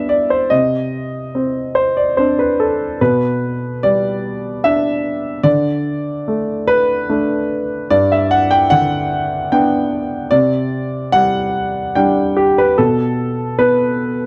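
A rubato three-four lilt carries this tender, peaceful neoclassical minimalist piano fragment, cut from a longer piece, in which a solo concert grand with a clear, present tone, deep bass and short sustain sits up front in a dry, close 1970s-style studio recording with small room ambience, moving through chords such as Cmadd9, G/B, D5 and Csus2 across its 14.3 seconds.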